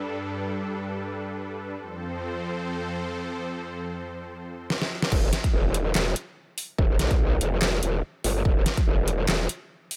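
A swung, half-time sixteenth-note pulse drives this chaotic, menacing stretch of heavy wobble dubstep, cut from a longer piece. It opens on a lush, detuned supersaw pad holding sustained Gadd9 and F chords with sidechain pumping, until a drum fill at 4.7 seconds brings in an up-front, small-room kit of deep snare, metallic hats, handclaps and crash cymbal. The drop lands at 5.1 seconds with a punchy, layered electronic kick and a saturated, formant-filtered growl bass whose aggressive wobble is thickened by chorus and overdrive, set in a digital ambience.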